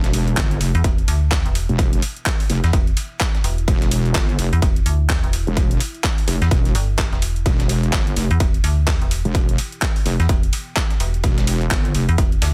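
A heavy, saturated wobble bass opens this swaggering, gritty bass house excerpt together with a very quiet, dark ambient pad, a dusty sampler-style kit of hi-hat, ride cymbal and medium-tuned snare tucked in the background, and a tape-colored house kit of handclaps and hi-hat, while a barely audible electronic impact sits beneath the first seconds. A punchy, layered electronic kick drum arrives at 0.4 seconds and a metallic, mellow FM bass at 0.7 seconds, both up front alongside the wobble bass, with sidechain pumping driving the basses and the dusty kit's cymbals and hats. The swung sixteenths give it a loose, strutting feel, and the sound stays close and dry.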